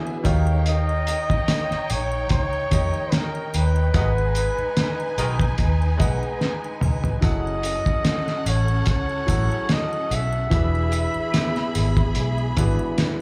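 Heard through a club PA with light reverb, this smooth, cinematic slice of lush 1970s-style soul at 73 BPM in F# dorian sets a soft-attack flugelhorn melody with vibrato over bowed, distant strings, a clear and boxy baby grand, a quiet ringing vibraphone, a shimmering triangle, a muffled, fat-snared drum kit and a round, punchy muted bass up front, while a slightly broken-up electric guitar riff flickers only until 0.5 seconds and a dark horn section adds octave-doubled stabs from 4.0 to 5.4 seconds ahead of a drum fill at 6.4 seconds.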